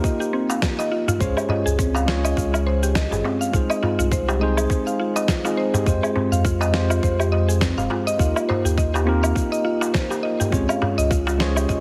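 A swung 16th-note groove at 103 BPM in 4/4, built on a tight electronic kick with a gritty sampler-style shaker, fat snare and woodblock, and a crisp metal-shell darbuka from 0.5 s, drives this earthy, hypnotic organic downtempo excerpt, where a round sub bass pumps in from 1.2 s beneath an up-front tine electric piano with 12-bit grit, sidechain pumping and digital delay, and woody FM pluck arpeggios with chorus and delay, cycling through Ebadd9, Db, Ab/C and Fmadd9 in a lush hall under a heavily compressed, radio-like sheen.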